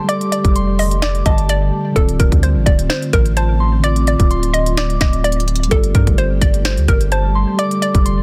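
A dense, heavily limited modern mix with little reverb frames this eerie, hard-hitting half-time hip hop and trap excerpt, which moves through Gsus2, Dm7 and back to Gsus2. A hollow, warbling square-wave pluck, bouncy and vintage with chorus, filtering and tape echo, carries the melody alongside a pure FM synth bell second line, joined by a mellow tine electric piano heard through built-in speakers and an ethereal, airy pad sitting in the background. The up-front electronic drum kit, with its hard-clipped kick, sharp snare, crisp hats and finger snaps, enters at 0.1 seconds, and a deep, sine-based 808-style bass with long decaying notes follows at 0.4 seconds.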